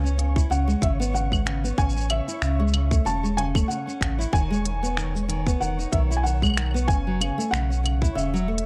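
A felt-muted upright piano carries a soft, vintage melody through a delay, over fingerpicked nylon-string guitar arpeggios, a round sine sub bass and a flickering, grainy granular texture in the background. In this hopeful, delicate folktronica excerpt in E major at 94 BPM with a light 16th-note swing, the harmony moves from C#7(no3) through A and Emaj7 to F#m7. From 0.1 seconds a produced kit of claves, finger snaps, smooth hi-hat and shaker joins, and a tight electronic kick enters at 0.4 seconds, all set in a digital ambience.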